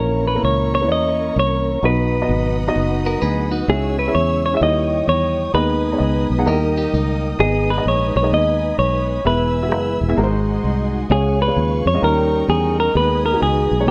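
Light studio reverb frames this fervent, solemn gospel excerpt with a swung feel, where a picked, compressed clean electric guitar carries the melody up front over an intimate baby grand piano with audible action noise, a soft, flute-like tonewheel organ with key click, chorus vibrato and fast rotary speaker in the background, a lush bowed string section with expressive vibrato and portamento, and a round, foam-muted fingered electric bass, while another electric guitar adds a second line from 3.1 to 7.4 seconds.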